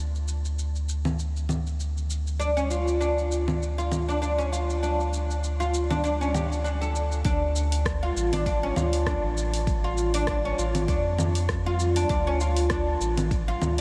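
A dreamy, reverb-soaked mix hangs in a huge ambient space, giving this cut from a longer organic downtempo piece a meditative glow. It moves at 99 BPM in 4/4 with a 16th-note swing, sitting in D harmonic minor over a D minor chord. A round, sine-like sub bass opens the track up front, its sustained low notes pumping against the sidechain, while a deep house kit of congas, hi-hat, rim click and shaker follows almost at once, its layered electronic sound re-recorded in a small room. At 2.4 seconds a woody, fretless oud enters with plectrum-plucked arpeggios, its double strings mellow and close, trailed by analog delay. From 7.2 seconds a deep, layered electronic kick drum joins, adding weight beneath the percussion until just before the close.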